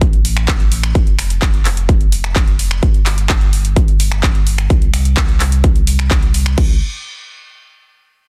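A steady, straight pulse drives this uplifting, triumphant slice of festival progressive house, cut from a longer piece. Up front sits a punchy, layered electronic kick, re-recorded in a small room and standing as the loudest element. Around it, a big-room dance kit adds crash cymbal, finger snaps, handclaps and metallic hats, sitting lower in the mix. Underneath, a deep, thick sub bass with a triangle-like tone and fast attack holds sustained low notes between F1 and C2, colored by tube saturation and pumping through sidechain compression. The bass, kick and kit all drop out by about 6.8 seconds, just after a new section begins at 6.6 seconds and runs to 8.3 seconds. The sound is dry, dense and heavily limited in a loud, modern master.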